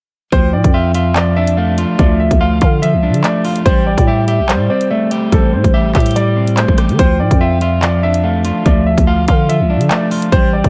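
A half-time drill groove at 144 BPM in 4/4 drives this tense, cold hip hop fragment in D minor, with an up-front electronic kit of hard-clipped kick, bright hi-hats, handclaps and rim clicks sitting over a growling, buzzy 808-style bass with a fast attack and decaying tail. A worn grand piano with long sustain carries the melody through Dmadd9, Am7 and back to Dmadd9, while a dark, slightly broken-up electric guitar plays fingered accompaniment up front, its pitch drifting with a warble. Tucked in the background, a hollow, woody clarinet-like synth lead adds a soft second line with vibrato, chorus and digital delay, all set in a digital ambience from 0.3 to 10.7 seconds of a longer piece.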